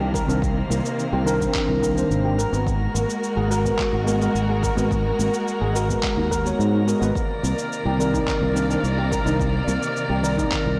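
An up-front fretless electric bass anchors this smooth, warm sunset chillout clip in C minor, its round, direct-and-amped tone thickened by transformer saturation and an ensemble chorus. Above it, a dark chamber string section holds bowed, vibrato-laden chords from a distance, roughened by vintage 12-bit sampler grit, while a clean tine electric piano with delay supplies the accompaniment. A mellow steel pan, struck with soft rubber sticks, plays shimmering arpeggios in the background through a band-limited, vintage filter and its own delay. High above, a calm, glassy texture of drifting sine overtones with slow attack and long release adds chorus and built-in reverb. The 107 BPM straight 4/4 groove comes from a punchy, layered electronic kick and gritty, compressed sampler-style cabasa and handclaps. The harmony moves from Cm9 to Abm9 and back, all inside a moderate scoring-stage reverb on a blown-out, overdriven recording cut from a longer piece.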